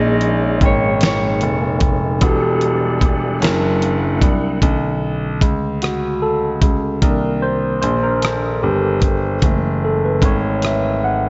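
A dreamy, reverb-soaked mix of this sultry, late-night slow six-eight R&B excerpt at 50 BPM puts a dusty, gritty sampler-style drum kit up front, while a dark, fingered electric guitar melody and a full tonewheel organ with overdrive, chorus vibrato and fast rotary speaker drop out by 4.6 seconds, leaving a worn, slightly out-of-tune tine electric piano with analog chorus to solo over clear, intimate grand piano bass with audible action noise through chords such as Bm9, Cm9 and F#m9.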